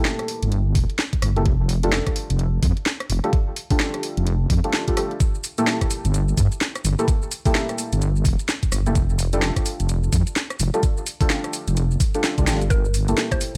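Soft, dark chord stabs treated with chorus, phaser and tape echo, moving between Gm69 and F69, open this moody, skippy two-step garage excerpt together with an overdriven garage kit with cracking snare, rim click, hi-hat and shaker. A deep, wobbling sawtooth bass enters up front at 0.4 s, followed by a knocking electronic kick at 0.8 s, while a woody, mallet-like FM pluck appears at 12.7 s just after a drum fill at 12.5 s, the whole dry mix dusted with vinyl crackle.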